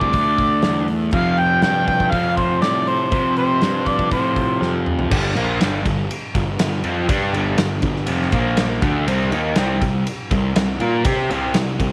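An amplified, overdriven harmonica opens this gritty, driving excerpt of blues rock power trio and southern rock, playing a jazz-style solo melody with light vibrato, tongue slaps and scooped notes, thickened by a slapback echo. Beneath it from the start, a crunchy, double-tracked electric guitar picks a riff up front, while a fuzz-laden picked bass adds a bright, growly low end and a big acoustic rock kit drives a straight 4/4 at 121 BPM with a punchy kick, medium-tuned snare, hi-hat, ride, crash and toms in a dark, smooth big-room sound. The harmonica drops out at 4.6 seconds as the drums play a fill, and a new section begins at 5.1 seconds. The guitar, bass and drums carry on together to the cut at 11.9 seconds over chords moving from D5 and F to G5, Bb5, D5 and C5. A light studio reverb sits around the mix.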